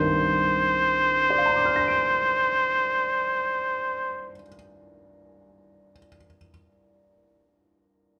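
A slow swung 4/4 at 39 BPM carries this smoky, wistful jazz fragment in C minor, where a nasal, breathy trumpet with straight mute sings up front at C5 with vibrato until 4.4 seconds over a Cm9 chord from a dark, mellow baby grand piano whose intimate action noise stays audible as it carries on alone to 8.2 seconds, the whole held in a large studio's moderate reverb.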